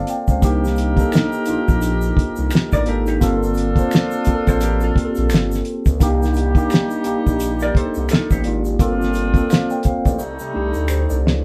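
A mellow tine electric piano opens with a brief fill before settling into warm, clean chords alongside the full band, setting a smooth, introspective neo-soul R&B mood at 86 BPM in C dorian with a gentle sixteenth-note swing. Up front, a cloth-damped, thuddy drum kit gives a fat snare, a tight kick and a dark, rolled-off top, joined by a smooth, warm synth bass that blends sawtooth and square tones with a moving notch and sustained, fast-attack notes. A distant, roomy horn section adds stabs with light vibrato, while a faint egg shaker, finger snaps and group handclaps sit softly in a small room. At 2.7 seconds a clean, dark hollow-body jazz guitar enters with a picked, compressed second line that lasts until 8.8 seconds, as the harmony moves between Cm9 and Gm11 before landing on Cm69. The band sounds as if playing live together in one room with moderate studio reverb, and a drum fill from 10.2 seconds carries this short section cut from a longer piece toward its close.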